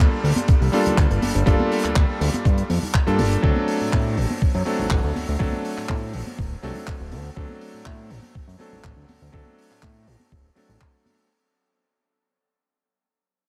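Nu-disco at 122 BPM with a sensual, cosmic mood, this short excerpt fades out throughout as a thumpy, tape-warm electronic kick sits up front beside a fat, detuned, saturated sawtooth-and-square analog bass, a clear, vintage electric grand piano with clangy lows colored by a low-pass filter and tape echo, a damped, dry 70s drum kit with handclaps and hi-hat, and ringing congas in the background, moving from Gm9 to D7 at 3.4 seconds in light reverb.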